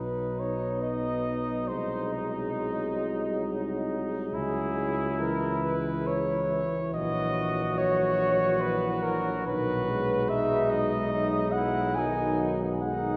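Lyrical and tender, this slow, rubato hymn-like classical passage for brass band in B major moves at 70 BPM in 3/4, with a warm cornet carrying the melody up front with light vibrato, a clear flugelhorn adding a second line, a dark trombone and a warm euphonium with vibrato accompanying from the background, and a mellow tuba anchoring the bass, all bathed in the long, wet reverb of a cathedral-like space as the chords move from B through C#m and back to B.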